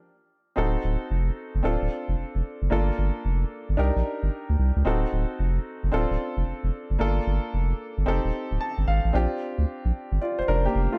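A saturated, thick sub bass sits up front beneath a clear, intimate grand piano with audible action noise in this slick, punchy new jack swing excerpt at 112 BPM, swinging on the 16ths through D7b9, Dm7, Gm9 and Cm7 changes, with both parts entering at 0.6 seconds after a stop, a piano fill at 8.3 seconds, and a shift to a Bb6 section at 9.1 seconds, all bathed in a dark studio reverb.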